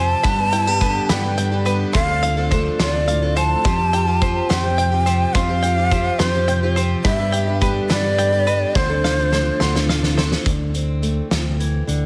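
A heavily compressed, radio-like sound with light reverb and studio ambience frames this nostalgic, anthemic indie folk excerpt in a straight 6/8 at 71 BPM, where a breathy, close-miked shakuhachi carries an expressive melody with vibrato until 9.9 seconds over a fingerpicked steel-string acoustic guitar with audible finger squeak, a shimmering, octave-doubled picked twelve-string, twangy bluegrass banjo arpeggios, a dark, round fingered electric bass and a loose indie drum kit with a fat snare and tight kick that plays a fill from 8.8 seconds before the music moves into a new section at 10.5 seconds.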